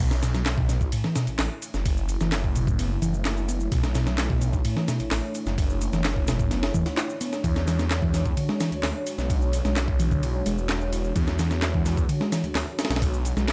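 Dry and gritty with sampler crunch, this funky breakbeat excerpt at 129 BPM in B dorian pairs a compressed, pitched-up sampler drum kit with a thumpy kick, layered electronic shaker and handclaps, a swirling, saturated, detuned saw bass up front, a round, punchy hollow-body picked electric bass riff, and a deep, moody analog pad pumping under sustained chords that move from Bm11 to E13 at 7.4 seconds.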